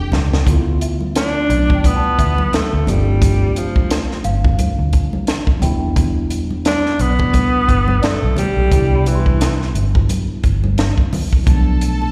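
A short drum fill on a compact cocktail kit opens this excerpt of lush 1970s-style soul, its dry, high-tuned snare and punchy kick sitting up front, while a brief touch of clear, bowed violin section and a mellow tine electric piano with analog chorus and slapback echo sound from the start. At 87 BPM in 4/4 with a gentle sixteenth-note swing in D dorian, the mood is silky and cinematic, carried by a dark, round, foam-muted electric bass and bright, thin-skinned congas tucked into the background. A delicate, bell-like celesta adds a sweet sparkle behind the band from 0.8 seconds, and at 1.2 seconds a smooth, vibrato-rich alto saxophone takes the jazz-style solo melody, its tone treated with slapback echo. The chords move from Dm69 through G7sus4, Em7 and Cmaj9 before landing on Bm7b5 at 11.5 seconds, where the lush violin section briefly returns. The whole performance has the feel of a live gig heard through a venue's PA, framed by small room ambience and recital hall reverb.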